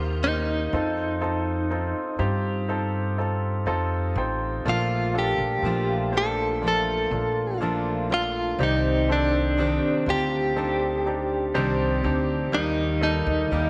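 A clean, direct-recorded electric guitar carries the melody with tremolo from 0.2 seconds, its compressed, picked tone sitting up front in this hopeful, emotional pop fragment in Bb major at a slow 61 BPM in 4/4. A clear, intimate grand piano with audible action noise and long sustain accompanies throughout, adding a fill from 3.2 seconds, while a woody, thumpy pizzicato upright bass on gut strings anchors the low end. At 4.7 seconds a full-bodied jumbo steel-string acoustic guitar joins with fingerpicked arpeggios as the chords move through Bbmaj7 and Cmadd9, all set in a moderate plate reverb.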